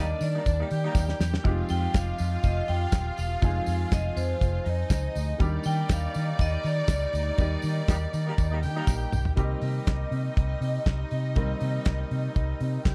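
A damped 70s drum kit with a fat snare, tight kick, handclaps, hi-hat and toms drives this glamorous, celebratory disco cut at 121 BPM alongside a round, punchy, foam-muted vintage electric bass, both up front. A ringing, metallic vibraphone struck with hard mallets carries the melody until 9.1 seconds over a lush, bowed violin section with slapback echo, worn baby grand piano chords and a jingly tambourine in the background, while a dark, distant horn section punches stabs at the opening and again at 7.9 seconds, where band accents and drum fills also land. The chords move from Ebmaj7 to Fm9 and back before settling on Cm7 at 9.4 seconds, with small room reverb and a dark, warm production.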